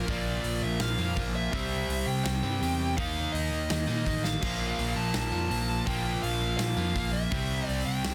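Punk rock at 166 BPM in 4/4 with a straight feel, this energetic, upbeat fragment of a longer piece rides a half-time groove for its full 8.1 seconds. A smooth, dark overdriven lead guitar carries the melody high above the band, ranging from D5 to A5. Beneath it, an overdriven electric guitar with a compressed, bright edge and an overdriven semi-hollow guitar with a hollow-body tone both pick the riff between Bb2 and Eb4. A growly, punchy overdriven picked bass and a big acoustic rock kit, with a medium-tuned snare, punchy kick and bright cymbals over hi-hat and crash, join at 0.1 seconds, and the drums break into a fill at 4.2 seconds. The harmony moves through Bb, C, Eb5 and Bb5 chords before returning to C, all set in a dry, dense, heavily limited modern mix.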